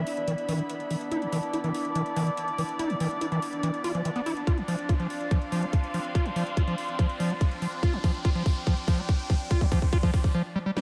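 An overdriven acid bass sits up front in this hypnotic, intense psychedelic trance build-up, its squelchy, gritty square-wave riff carrying a resonant filter sweep throughout, with delay and sidechain pumping. Behind it, a sawtooth-and-sine drone holds sustained chords whose overtones keep moving, colored by chorus, phaser and its own reverb, while a muted string section adds a dark, veiled, con sordino texture with vibrato, both also pumping with the sidechain. A techno drum kit supplies cracking snare and metallic hi-hats, and an electronic riser enters at 3.0 seconds. A tight, layered electronic kick drum arrives up front at 4.5 seconds with a drum fill that runs until a brief break at 10.3 seconds. A lush hall reverb surrounds the mix in this piece cut from a longer track.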